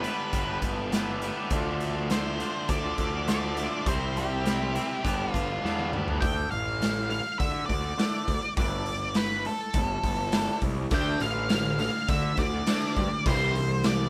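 Brooding and angsty, this quiet-loud alternative rock excerpt puts a dark octave-fuzz lead guitar melody up front over twangy, clean electric guitar arpeggios in the background, a growly overdriven fuzz bass and a gritty, punchy garage drum kit in a pumping stone room, while a bright overdriven electric guitar riff drives the opening until a drum fill hands off at 6.2 seconds and a compressed fuzz guitar riff joins at 10.9 seconds, the band captured playing live in one room with moderate reverb.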